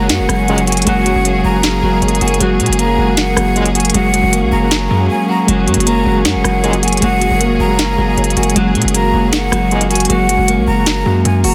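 Triumphant yet dreamy, this short trap-flavoured hip hop excerpt moves with a half-time feel over a single lush F#add9 chord. A warbling, detuned lo-fi synth keys part with chorus carries the accompaniment, nostalgic and dark, while a rich studio string section holds bowed chords with a biting, focused vibrato. A clean, picked electric guitar plays arpeggios through delay, and a breathy jazz flute with soft attack and lifted highs sings an expressive second line, also touched by delay. Underneath, a distorted 808-style bass hits heavy and aggressive up front, joined from 0.1 seconds by a crisp, sharp-snared trap kit of hi-hat, rim click and snare. A mellow brass ensemble drops in brief classical-style stabs, first at 0.5 seconds, and a short silent gap at 5.1 seconds breaks the dense, heavily limited mix set in light small-room reverb.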